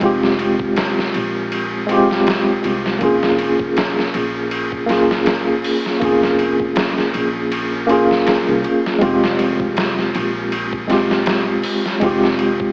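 Vinyl crackle and an AM-radio sound wrap this melancholic, cinematic trip hop fragment in light reverb, moving at a swung 80 BPM in F minor over Fmadd9 and Bbm7/F chords. Up front, a worn, slightly out-of-tune tine electric piano carries the accompaniment through a combo amp with medium tremolo and tape echo. A compressed, pitched-down sampler-style kit with a thumpy kick and muffled, tape-warm character sits beside it, while a woody, growly pizzicato upright bass stays dark in the background.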